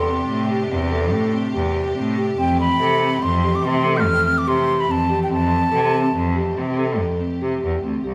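In a straight 7/4, this playful, hopeful piece of contemporary chamber music, cut from a longer work, sets an airy, tongued wooden flute melody with vibrato close and up front until 6.5 s, over mellow, ringing vibraphone arpeggios played with soft mallets, a rich bowed solo cello carrying the bass with focused bite, and a bright symphonic string section holding intense sustained chords from a distance, as the harmony moves from Am7 to Fmaj9 in a moderate recital hall reverb.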